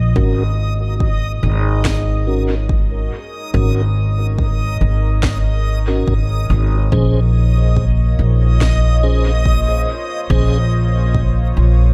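An echo-heavy mix sets a meditative, deep mood in this slow ambient dub fragment, where a dark upright bass with gut strings sits thumpy and up front, its pizzicato notes thickened by tube saturation. A smooth, detuned analog pad fades in beneath a reversed, granular texture that sounds bright and dreamy in its own reverb, while a piping tonewheel organ with key click plays chorus-vibrato stabs through a filter sweep and dub echo. A layered, tape-warm electronic kick anchors the groove, a woody electronic snare with dub echo sounds from 1.8 to 8.8 seconds, and the harmony moves from Ab9sus4 to Bbm7 at 6.9 seconds.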